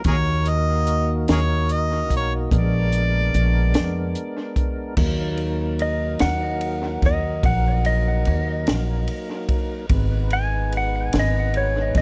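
A slow blues in a straight 12/8, this soulful, smoky fragment is cut from a longer piece and sits in a small room with a heavy wash of echo. A tonewheel organ holds sustained chords throughout, its fat, lightly overdriven tone colored by chorus vibrato, key click and a slow rotary speaker. Underneath, a pizzicato upright bass with a woody, growly voice sits up front, alongside a compact cocktail drum kit with a punchy kick, high-tuned snare and dark cymbals, the whole kit given a touch of analog delay. A clear harmonica carries the melody for the first few seconds, jazzy and scooped with light vibrato, tongue slaps and a soft attack, through overdrive and delay. From 5.8 seconds a bright, twangy lap steel guitar, played with fingerpicks and a slide, takes up a compressed, up-front second line as the harmony, having passed from Eb minor through a darker Bb dominant and back, moves on to Ab minor.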